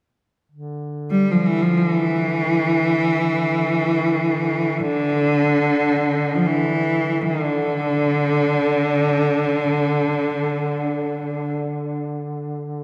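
A dreamy hall reverb with a long 2.5-second tail bathes this short Caucasian folk lament, setting its mournful, longing mood. Beneath it all, a very quiet duduk holds a low drone from 0.5 seconds to the end, its mellow tone shaded with vibrato and scooped notes in a folk style. At 1.1 seconds a single bowed cello enters up front to carry the melody in a low register. Its rich, focused voice has a smooth top and a singing vibrato, and an analog delay trails its phrases. The cello falls away at 11.6 seconds, leaving the duduk drone to close this fragment of a longer piece.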